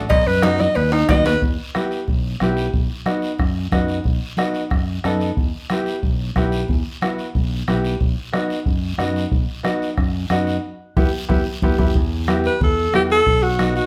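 A band playing live in one large studio room, with moderate reverb, carries this passionate, fiery cumbia excerpt, where a clear alto saxophone with light vibrato takes a short solo up front before dropping out at 1.4 seconds and returning at 12.5 seconds. A woody upright piano with long sustain sits up front over a punchy fingered electric bass, while a compressed, saturated bombo, thick-skinned damped congas, a raspy guiro, and ringing metal-shell cowbell and timbales that stop at 1.3 seconds fill out the percussion. The chords move between B and E minor, with drum fills, a band accent and a piano fill leading into the final section before a closing B7.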